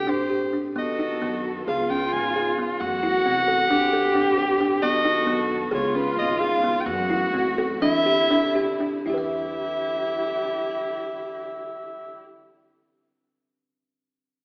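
Restless and urgent, this contemporary chamber piece in 9/8 sets a smooth, jazz-inflected soprano saxophone melody up front against a dark, nasal cello line bowed with vibrato and portamento, while a bright, buzzing kalimba spins woody thumbnail-plucked arpeggios and a pizzicato upright bass sits low beneath. From 0.8 s a distant string section holds expressive chords in the background, and the music slows from 5.3 s before moving into a new section at 9.1 s. The parts ring in a reverberant recital hall yet carry an AM-radio tint, in a fragment cut from a longer work.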